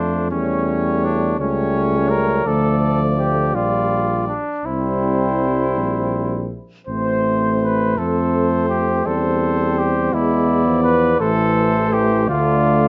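A slow, rubato 6/8 at 55 dotted-quarter beats per minute sets a noble, stately pace for this classical brass quintet fragment, cut from a longer piece and lasting about 12.9 seconds. A clear, present trumpet carries the melody, while a second trumpet, mellow with light vibrato and a smooth top, sits up front with its own line below. A vibrato-tinged French horn and a distant, roomy trombone with light vibrato fill in the accompaniment from the background. Anchoring everything beneath, a soft-attacked tuba with a rounded top holds the bass up front. The harmony moves through A7/E, Dm, Gm7/Bb and C before turning to Am, F, C/E and E7, settling on Am at 11.2 seconds and closing on Dm. A moderate large-studio reverb gives the ensemble a sense of space, and the highs are rolled off above 7.5 kHz.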